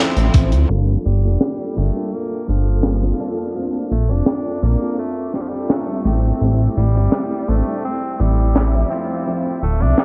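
A straight 84 BPM groove in 4/4 from a tight funk drum kit, with hi-hat and a high-tuned snare, plus a brief overdriven, thumpy electronic kick at 0.3 seconds, carries this hazy, woozy vaporwave excerpt, where a glossy, up-front chorused synth bass and a lush FM electric piano with a soft pad layer move through Dm9, Gm7, Bbmaj7 and Am7, a bright, clean semi-hollow guitar riff sits in the background under chorus, a low-pass filter and diffuse delay, and an edgy tenor saxophone enters at 1.1 seconds with vibrato, scooped notes and tape echo, all within a dreamy, cassette-tinged mix soaked in a huge reverb and a filter sweep.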